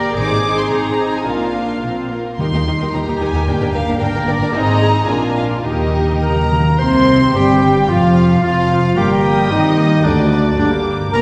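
A bright solo clarinet takes a second line from 6.2 s, standing out in this spirited, lively classical-period movement for symphony orchestra, which moves at a quick 110 BPM in 2/4 with a rubato feel. Two chamber violin sections carry the melody and a second line, bowed sul tasto with vibrato, soft attacks and a smooth, intimate top. Beneath them, a viola section provides dark, understated accompaniment. Cellos and double basses anchor the bass with a shadowy, close sound, while a French horn section sustains chords from a distant, roomy position. Timpani played with medium mallets on calf heads sit in the background and add a fill at 5.7 s. An airy flute ensemble with lifted highs joins the clarinet on a second line from 6.2 s, shortly before the music turns from Eb major to C minor at 6.8 s, all bathed in a wet scoring-stage reverb heard from further back in the room, in a passage cut from a longer piece.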